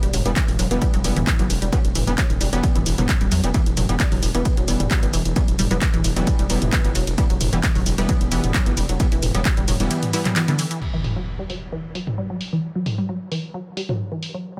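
This excerpt opens on a squelchy, resonant blip pluck riff running from the start to 14.6 seconds, treated with phaser, dub echo and sidechain pumping. It's driving, relentless peak-time techno at 132 BPM in 4/4 with a straight feel, sitting on an E minor chord throughout. Beneath the pluck, a gritty, saturated synth bass pumps against the sidechain until 9.9 seconds, while a punchy analog drum machine, tape-toned and re-recorded in a large room, supplies handclaps, hi-hat, shaker, ride, crash and toms through low-pass filtering. An electronic kick drum hits from 0.4 seconds, and a thick, detuned rave stab with chorus, built-in reverb and digital delay enters at 0.3 seconds and runs through the drop until 10.5 seconds. At 10.8 seconds an electronic impact marks the turn into a sparser closing stretch, in a dry mix.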